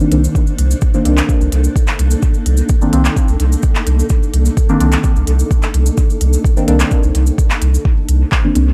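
A dry, gritty hardware sound frames this hypnotic, cavernous dub techno excerpt at 128 BPM in C dorian, where a round, soft sub bass on C2 and an up-front deep electronic kick drive beneath dark, detuned chord stabs on Cm9 treated with chorus, phaser and dub echo, while a blurred granular cloud pad with its own reverb joins the bass and stabs in breathing with sidechain pumping, and a deep house kit of handclaps and smooth hats and a grainy, bright cabasa round out the texture.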